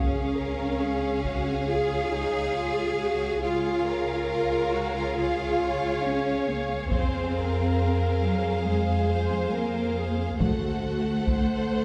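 Close, smooth cellos anchor this dramatic, epic orchestral film-score excerpt at 69 BPM, joined by up-front bowed double basses, even violas, a lush, focused violin melody over a second violin line set in the background, and distant, dark French horns holding sustained chords, while a taiko ensemble struck with heavy sticks lands briefly at 1.2 s and returns from 6.9 s as the harmony moves from Db through Fm to D7, all set back in a wet scoring-stage reverb.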